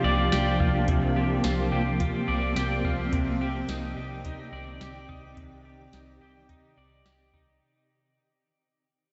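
A shimmering, detuned pad in sustained chords, a slightly broken-up, twangy electric guitar playing fingered arpeggios up front through analog chorus and diffuse delay, and a dark, round, foam-muted electric bass open this hazy, melancholic C minor dream pop excerpt at 107 BPM; a soft, overdriven analog rhythm box with deep kick, crisp snare and metallic hats joins at 0.3 s, and the whole fragment fades out over Gm7/C and Cmadd9 in a lush hall reverb, with the guitar ringing on alone until 8.2 s.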